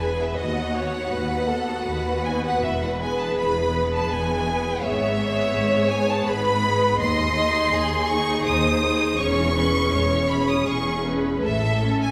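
A focused, up-front violin melody with vibrato sings over a smooth second violin line, even violas, expressive cellos and lush double basses in this tender, rubato romantic string-orchestra fragment in 3/4, all bowed and bathed in the reverberant glow of a recital hall.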